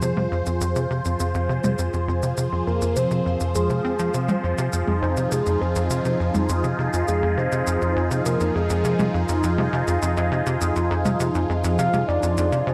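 A steady, straight four-beat pulse is carried by a tight, punchy sequencer bass riff, its sawtooth and square-wave tones plucked through a filter with a fast, decaying attack, thickened by lush chorus and tape echo. Electronic cabasa and toms add an analog percussive texture, their hits trailing into tape echo. Up front, a phased analog pad holds sustained chords on a single minor chord, its detuned sawtooth sound swirling and evolving through a moving notch, phaser and chorus with a slow attack. At 2.7 seconds a soft, octave-layered synth lead enters with a melody, round and dark, blending triangle and sine tones over a sub octave with vibrato, chorus and tape echo. Moderate plate reverb gives this expansive, hypnotic piece of sequencer-driven ambient space music a spacious sheen, in a fragment cut from a longer work.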